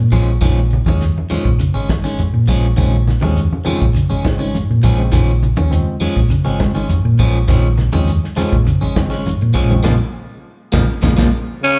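A round, punchy hollow-body bass opens this driving, funky afrobeat excerpt from a live club gig, joined almost at once by a dark, dry soul drum kit, grainy shekere, ringing low-tuned congas in the background, a clean semi-hollow guitar playing arpeggios with spring reverb and slapback echo, and twangy, slightly broken-up guitar stabs, before a barky, overdriven tine electric piano slips in at 2.8 seconds, and amid a band accent and drum fill a raspy tenor saxophone, a mellow trombone section and a nasal straight-muted trombone sound one brief note together at 11.6 seconds over a single minor-eleventh chord.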